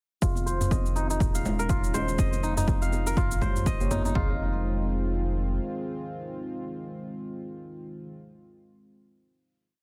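Afro house with a swing on the sixteenths, this short, earthy and driving piece opens on a breakdown. A house drum kit sets a punchy four-on-the-floor kick with floor toms, joined by programmed electronic shaker and low toms, while high-tuned acoustic congas ring with soft hands in the background of a small room. A round sine sub bass carries a dotted-rhythm line through tube saturation, and a crisp, fingerpicked kora loops a twelve-step arpeggio that drifts against the bar, shaped by a low-pass filter sweep and digital delay. Underneath, a smooth sawtooth analog pad holds sustained chords with chorus, and a dark, detuned chord stab plays syncopated drop2 voicings through chorus, phaser and delay, its filter also sweeping during the breakdown. The percussion drops away around 4.2 seconds as the final chord arrives, the kora stops at 5.7 seconds, and the pad and stab sustain to 8.1 seconds, with sidechain pumping on the pitched parts under light reverb and a dense, heavily limited modern master.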